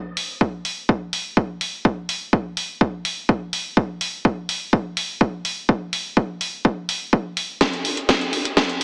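A produced techno kit opens this short cut from a longer melodic techno piece at 125 BPM in straight 4/4, carrying a melancholic, dramatic mood, with a cracking snare and metallic hi-hats. A punchy, layered electronic kick drum joins up front, and the drums build steadily before a drum fill from 7.6 to 8.8 seconds. The mix is wrapped in a lush hall reverb yet squeezed into a heavily compressed, thin radio-like sound, as if heard through a small speaker.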